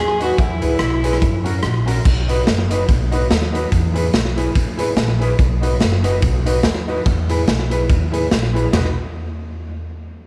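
Upbeat and cheerful, this swung ska excerpt from a longer piece opens with a tight horn section carrying a brief vibrato-laced melody until 1.9 seconds over a woody, growly pizzicato upright bass, while a gritty, punchy garage drum kit with slapback echo sits up front and a dark, clean electric guitar and intimate upright piano stabs with audible action noise sit in the background, all in a small room with moderate spring reverb.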